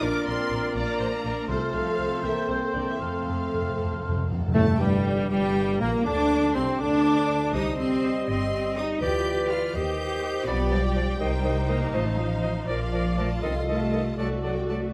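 Hard-mallet timpani cut through this stormy, dramatic classical-period orchestral passage in 6/8 with a rubato feel, striking articulate, close and dry from 1.5 s with a fill leading into the darker second section at 4.5 s, then returning briefly at 9.0 s. Above them a lush violin section carries the melody in the background while a second violin section, a clear but distant clarinet, a cor anglais with light vibrato and a mellow large flute ensemble, heard only until 4.3 s, weave supporting lines. Underneath, a dark bassoon, an even viola section, a roomy French horn section holding sustained chords, and smooth cello and double bass sections fill out the sound, all set in a moderate recital-hall reverb.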